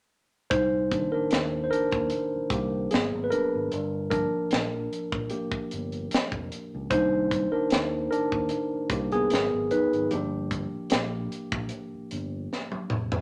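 A tight funk drum kit sets a lightly swung 75 BPM groove in 4/4, with its high-tuned snare and tight kick up front and a drum fill arriving at 12.5 s, while a punchy fingered electric bass sounds direct and amped beneath it. Over this, a worn, slightly out-of-tune tine electric piano, clean through a combo amp, takes the solo across Cm9, Abm7 and Gm7 in C minor, tuned to A4 = 438 Hz. This soulful, late-night neo-soul R&B passage sits in moderate studio reverb and is cut from a longer piece.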